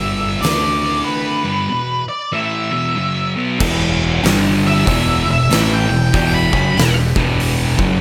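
An octave-fuzz lead guitar sits up front with a dark, distorted tone and tape echo, carrying the melody from the opening until 7.0 seconds and stepping into a solo at 3.6 seconds. This is a sludgy, heavy stoner and doom metal passage cut from a longer piece, moving at 95 BPM in 4/4 with a swung eighth-note feel in E minor. Two thick fuzz guitars grind out the riff in the background, one with a warm cast and the other darker, joined by a growling fingered electric bass whose overdriven, direct-and-amped sound anchors the low end. An oversized low-tuned drum kit comes in at 0.4 seconds, prominent and gritty, with a punchy kick, fat snare, dark cymbals and a pumping, bright stone-room character. At 3.6 seconds a further fuzz guitar enters, bright, double-tracked and compressed, thickening the riff as the harmony moves through power chords on E and G. The overall sound is dry, with little reverb.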